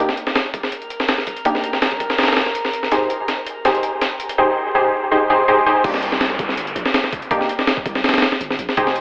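A frenetic, nostalgic 164 BPM drum and bass and jungle groove in C minor is driven by a gritty, pitched-up breakbeat kit with a thumpy kick and high-tuned snare, while bold, nasal orchestra-hit-like synth stabs with 12-bit sampler grit and dub echo build through a filter sweep over a calm, glassy harmonics texture and a drum fill, until the drop at 5.8 seconds brings a deep, mellow 808-style bass and a background downlifter under a lush hall reverb with vinyl crackle and a telephone-like tone.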